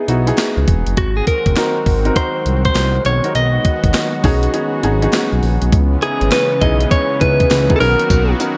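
Lightly reverberant and polished, this slick, confident new jack swing excerpt rides a swung, gated 80s drum machine with a thumpy kick, gated-reverb snare, hi-hat and tambourine (its kick drops out from 4.5 to 5.7 s), beneath an up-front, smooth sawtooth synth bass, a clear, intimate concert grand piano accompaniment, a brassy, detuned analog pad with chorus that enters at 1.0 s, crisp group handclaps in the background, and a clean, direct-recorded electric guitar carrying the melody through spring reverb.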